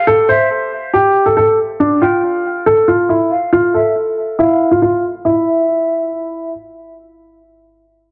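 This dark, ominous hip hop piece in E phrygian moves at 139 BPM with a half-time feel. A woody upright piano sits up front carrying the melody through a low-pass filter and tape echo, while a breathy jazz flute with a soft attack, vibrato, lifted highs and its own tape echo adds an expressive second line from the start, both parts stopping at 6.5 seconds. A filter sweep runs until 5.3 seconds, where the music moves into a new section, all set in light reverb and studio ambience within a dense, heavily limited modern master.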